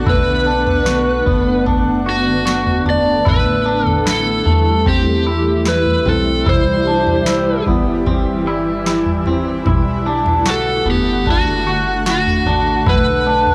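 Dream pop with a hazy, ethereal mood, this cassette-recorded clip from a longer piece sets an up-front overdriven slide guitar melody with tape echo over a shimmering, detuned ambient pad, twangy clean electric guitar arpeggios with subtle chorus, a plucky, dark analog bass and a booming analog drum machine with a deep kick and crisp snare that enters at 0.1 seconds, all bathed in moderate spring reverb as the chords move from Bm7 through Am7 and Cmaj7 back to Bm7.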